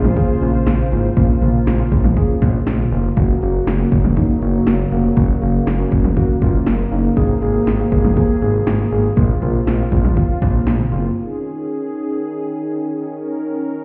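An overdriven deep house drum kit with a deep kick, punchy snare, metallic hats, cowbell and toms drives this cool synth-pop excerpt alongside a smooth, up-front sawtooth bass, dark, muted felt-like keys with chorus, and a detuned, warbling vintage pad that holds its sustained chords alone from 11.1 to 13.8 seconds, all heard muffled as if through a wall in a stone-room reverb.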